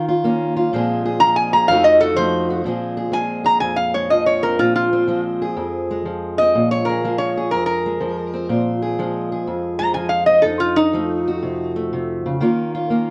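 Brooding and soulful, this short cut from a longer acoustic country blues piece moves with a swung 4/4 lilt and a dark, warm studio sound. A fingerpicked steel-string parlour guitar carries the accompaniment from the first moment, its boxy, shadowy tone sitting up front through suspended chords and a tense F7b9. At 1.2 seconds a lap resonator guitar enters with the melody, played slide-style with a steel bar and fingerpicks, and stays until 11.7 seconds. Its voice is metallic and nasal yet mellow, and it sits up front and a little louder than the accompaniment. A moderate reverb gives both guitars a modest sense of space. The harmony circles through Ebsus2, Bbsus2 and F7b9 before settling back on Ebsus2 near the close.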